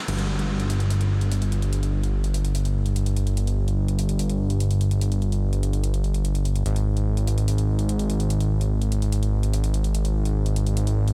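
A fat, detuned sawtooth bass sits up front, its thick, sustained tone hovering between G1 and Ab1 with a fast attack and a filter sweep shaping its sound. This driving, intense slice of psychedelic trance in straight 4/4 runs from 0.1 to 11.1 seconds as one unbroken section, cut from a longer piece. A big-room electronic dance kit plays throughout beneath the bass, its layered, produced sound marked by overdrive, a crash cymbal and metallic hi-hats. The whole band lands an accent at the very start, at 0.0 seconds. The room is dry, with little reverb, which keeps the bass close and present.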